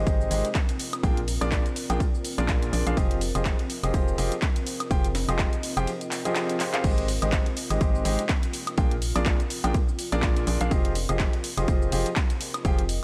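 Piano house at 124 BPM in F dorian, energetic yet bittersweet, cut from a longer piece with a swung sixteenth feel, where an up-front baby grand piano riff carries a warm, long-sustaining tone roughened by 12-bit sampler grit and echoed by digital delay over a cycle of Abmaj7, Bb7 and Fm9. A hollow, organ-like FM bass with tube saturation and a deep, moody detuned pad with chorus and reverb both pump against a punchy, overdriven electronic kick that sits up front. An overdriven house kit of handclaps, crash, hi-hat, shaker and woodblock, plus a very quiet, gritty, pitched-up breakbeat kit of hi-hat, ride and snare, fill out the groove, with a drum fill at 6.6 seconds.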